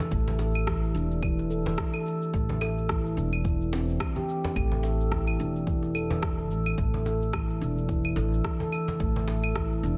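Earthy and meditative, this organic downtempo piece, cut from a longer work, moves with a light 16th-note swing as an up-front stainless-steel handpan rings out delayed arpeggios with sharp finger strokes over an Emadd11 chord that falls away, leaving the harmony unstated, at 2.3 seconds and returns at 4.6. Woody pizzicato upright bass anchors the low end beneath a deep, tape-warm electronic kick drum and a layered, produced pattern of electronic cabasa, claves and rim click, both set in a small room reverb. Soft-handed cajon with faint snares drops out at 9.4 seconds, while a bronze singing bowl struck with suede hovers barely audible in the background, its metallic tone slowly beating.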